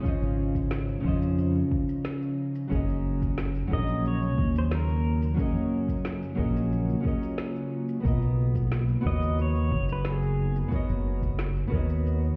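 This sunset chillout cut from a longer piece feels blissful and sunny, moving at an easy, straight pace over lush Dbmaj9, Gb6 and Cbmaj9 chords. A fingerpicked flamenco guitar carries the accompaniment with a warm acoustic tone touched by digital delay, while an ethereal, airy pad of detuned sawtooth and triangle voices holds slow-attack chords in the background, softened by ensemble chorus and its own reverb. Underneath, a layered electronic kick gives a deep thump, and a lighter electronic shaker and woody snare fill in the groove. The mellow fretless electric bass sits up front, dark, round and punchy, colored by tube saturation and a lush chorus. A clean electric pedal steel guitar, compressed and played with fingerpicks, arrives at 3.7 seconds with slide phrases and volume swells drifting through tape echo before bowing out at 10.6 seconds. The whole mix has a muffled quality, as if heard through a wall, set in a light stone-room reverb.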